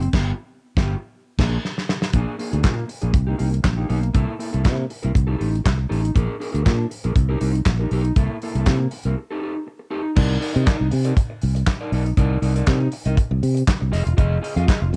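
This cut from a longer piece has the dry, close sound of a home cassette recording, with little room reverb. It is a sultry, danceable disco groove in C minor at 120 BPM in a straight 4/4. An acoustic soul kit sits up front with a tight kick, a medium-tuned snare, dark cymbals and a rolled-off top, adding hi-hat, handclaps and crash. Beside it, a bright, growly fingered electric bass comes through direct and amped, punchy and equally forward. Further back, a dark, slightly broken-up electric guitar plays a fingered accompaniment bathed in plate reverb, moving through chords such as G7, Cm7, C6 and Am7b5. The band opens on a shared accent capped by a drum fill at 1.6 seconds, drops into a break at 9.2 seconds, and settles onto Cm9 at 10.2 seconds before shifting to Fm7.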